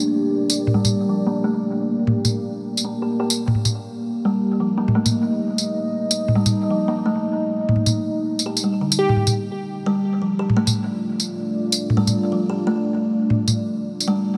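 Half-time drum and bass in G minor at 171 BPM, this spacious, dark excerpt moves with a swung half-time feel through Gm, Eb and Dm. A deep, moody pad of detuned sawtooth and sine layers with a sub octave holds sustained chords from the start, its slow attack and long release softened by chorus and its own reverb. Electronic tambourine and toms sit up front with a produced edge and a small room ambience, while a woody, hollow-sounding kalimba plays mellow arpeggios through a low-pass filter, tape echo and a filter sweep. At 9.0 s a punchy, catchy plucky unison lead with a noise layer and vibrato briefly sounds a single delayed G4. A huge ambient reverb surrounds the whole mix, giving it a cavernous depth.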